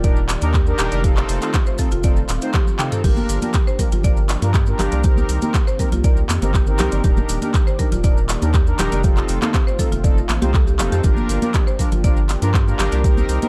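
A deep, up-front electronic kick drives this hypnotic, spiritual afro house excerpt at 120 BPM in G minor, joined by a produced afro-pop kit with metallic hats, handclaps, toms and crash, whose fill at 2.5 s ushers in bright, close, dry congas at 3.0 s, while grainy maracas sit in the background. A round, wave-folded analog bass pumps beneath buzzing, woody marimba arpeggios and dark, brassy synth stabs, both trailed by dub echo, as a smooth, detuned sawtooth pad with chorus sustains Ebmaj7, F7, Gm7 and Cm7 chords far behind. The production is dark and warm, with sidechain pumping on the bass, marimba, brass and pad.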